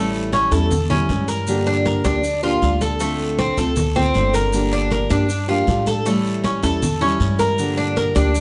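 Nostalgic and sultry, this brief excerpt of Cuban son and guajira moves at 157 BPM in a straight 4/4, cycling through A7, Gm7 and Dm7 harmonies. The Cuban tres sits up front with picked arpeggios, its doubled strings giving a metallic, partly octave-doubled shimmer with a warm body. Beneath it, a dark, fingerpicked nylon-string guitar supplies classical-toned accompaniment, while a woody, thumpy upright bass with gut strings is played pizzicato in the low register. In the background, ringing, high-tuned congas struck with hard hands enter at 0.1 seconds alongside grainy, mellow maracas, and a raspy, dry guiro joins at 0.3 seconds. A moderate large-studio reverb places the ensemble further back in the room, and the sound has a soft, rolled-off top end.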